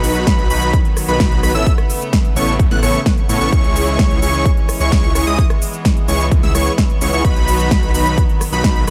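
Anthemic and emotional festival progressive house at 129 BPM in C# minor, this excerpt rides a punchy, overdriven kick up front and a crisp big-room kit of snare, hi-hat, rim click and shaker beneath a huge, lush supersaw riff, a bold, bright unison lead playing high arpeggios with chorus and delay, a thick, detuned saw bass with tube saturation, and floating strings in the background, all pumping with sidechain over chords moving from B to Aadd9 to C#m.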